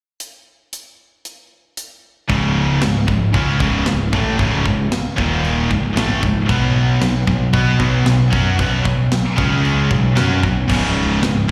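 A tight metal drum kit opens alone at 0.2 seconds, driving a straight 4/4 at 114 BPM with bright china, crash and hi-hat cymbals over a medium-tuned snare and tight kick. At 2.3 seconds the full band crashes in, turning this heavy metal fragment in C# minor relentless as three distorted guitars and a growling picked electric bass take up the riff together. The high-gain distorted guitar sits up front with a bright, cutting edge, while a second high-gain guitar and a double-tracked fuzz guitar with a rounder tone fill the background, both carrying a slapback echo. Beneath them the overdriven bass, heard both direct and amped, adds a thick low growl. The riff moves from C# minor through D#5 and B5 power chords before settling between C#5 and B5, and the whole band plays as if through a venue's PA, with small room ambience and a recital hall reverb around it.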